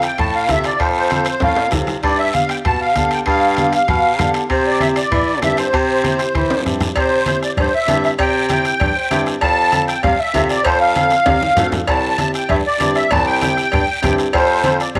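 A moderate plate reverb lends space to this festive cumbia, which is cut from a longer piece. Up front, a reedy musette accordion with a shimmering tuning carries the melody in a boxy small room. A warm baritone saxophone with vibrato plays the bass line in a pop style, also up front though distant and roomy. A dark, woody upright piano sits in the background with mellow accompaniment and adds a brief fill at 8.8 seconds. The percussion combines a close bombo struck with a soft beater, a raspy, dry guiro, bright low-tuned congas played with hard hands from 0.2 seconds, and ringing metal-shell timbales and cowbell further back. A drum fill leads into the second section at 7.0 seconds, and the joyful mood holds over harmony moving between F, G7 and C.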